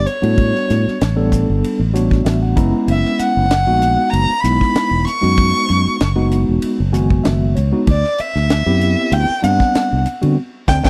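A dark, woody bowed violin with vibrato and slapback echo carries the melody from the first moment of this slick, bright excerpt of electric jazz fusion at 96 BPM, over a clean tine electric piano that adds fills at 1.6 and 6.6 seconds, a round fingered electric bass, and a tight funk kit with a high-tuned snare entering at 0.1 seconds, all up front in a dry, close 1970s-style studio sound as the chords move through A13sus4, Gb13sus4 and D13sus4 to a band accent at 10.4 seconds.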